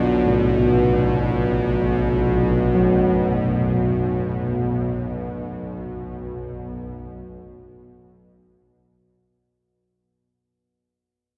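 Unsettling and dark, this brief excerpt of dark ambient drone drifts in free time in B minor, tuned to A4 = 435 Hz, and rests on a single B minor chord. A tense, detuned, sawtooth-edged bowed-like drone sits up front in the low register with ring modulation, a noise layer, vibrato and its own built-in reverb. Alongside it, mellow bronze carillon bells with a padded-clapper softness play delayed arpeggios, all set in a huge, wet ambient space of 7.1 seconds of decay as the piece fades out from 3.0 to 9.6 seconds.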